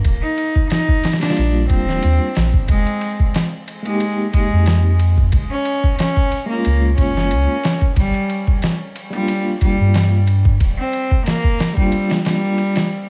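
A slightly swung 91 BPM trip hop groove opens the piece, with a gritty, pitched-down sampler-style kit (thumpy kick, medium-tuned snare, hi-hat and ride) sitting up front in studio reverb alongside a deep, round dub sub bass that drops out at 10.8 seconds. Over this, a single bowed cello with a reedy gut-string tone carries the melody through dub echo, while a clean tine electric piano with tremolo enters at 1.2 seconds to accompany it softly beneath. Vinyl crackle hangs over the slow progression from Ebmaj7 through Fm11, Gbmaj9 and Gm7, giving this cinematic, smoky fragment of a longer piece a hazy, nocturnal atmosphere.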